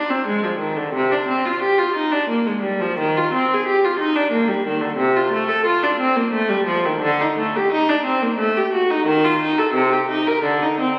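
Solemn and introspective, this brief excerpt from a baroque-style suite movement in C minor features a single unaccompanied viola, rich and focused with vibrato, bowed up front yet with a distant quality, moving freely in rubato around 88 BPM in 3/4 across a range spanning C3 to Bb4, bathed in a wet concert hall reverb and heard through the crackle and lossy artefacts of a very old 78 rpm record.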